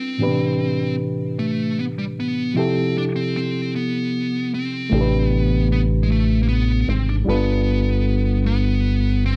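A dark, overdriven lead guitar carries a yearning, late-night melody in this slow six-eight R&B excerpt, set over a gritty, reedy electric piano that sounds run through a combo amp with a cassette-tape tint, while a rubbery, hollow square-wave bass joins at 4.9 seconds, all in a small home room as Am11, Fmaj9 and G7 chords pass by.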